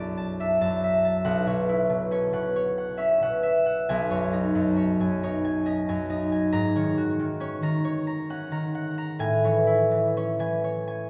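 A concert harp, up front, ringing and fingerpicked, plays alone through this gentle, mysterious 11.1-second cut from a longer classical piece, its rubato in a slow 6/8 drifting over chords from Bm7 through G#9sus4 to Amaj7 inside the long, wet reverb of a concert hall.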